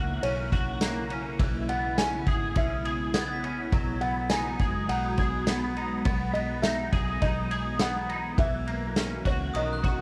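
A straight 4/4 pulse at 103 BPM from an up-front vintage drum kit of punchy kick, snare, dark ride cymbal and tambourine, entering at 0.2 s, carries this dreamy, ethereal dream pop excerpt in B major. Over it, a felt-muted upright piano with audible action noise sings a soft, intimate melody through tape echo, while a clean, compressed electric guitar plays chorused arpeggios. An airy detuned pad holds slow-attack chords, and a round, foam-muted fingered bass anchors the low end. A sparkling glockenspiel glints in the background at 3.1 s and 9.5 s, and a cassette-tape character colours most parts within a moderate room reverb.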